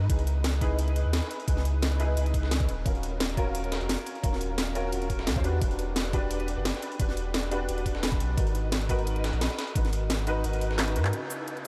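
A deep, round sine sub bass sits up front in this rolling, soulful liquid drum and bass excerpt at 174 BPM, its fast attack and sustained notes anchoring the low end. A knocking, overdriven electronic kick and a layered drum and bass kit, with a cracking snare, bright hats, handclaps and shaker in small room ambience, drive the straight 4/4 groove. Behind them, a compressed, pitched-up breakbeat sampler-style kit adds gritty hi-hat and high-tuned snare, filtered and set in the background. A baby grand piano with long sustain, treated with ensemble chorus and analog delay, carries the harmony through C#m9, D#m9, Em9 and G#m9 under a light digital reverb. A drum fill arrives at 10.8 seconds, leading into a band accent at 11.1 seconds as the chords return to C#m9.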